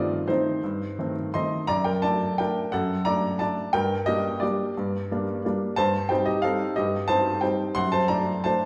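A reverberant recital hall surrounds this short passage, with a 1.7-second decay that places the listener further back in the room, while the upright piano itself still sits up front in the mix. It is a classical piano waltz in G minor, elegant and wistful, moving at 177 BPM in 3/4 with uneven beats and a rubato feel. The solo upright piano is clear, woody and intimate, with a short sustain, a natural character and audible action noise. It ranges from F#2 to C6, and the harmony moves through Am7b5/G, D/F# and Gm, then Cm/G at 5.8 seconds and D7/F# at 7.8 seconds. The 8.7-second clip is cut from a longer piece, and the piano plays the whole way through.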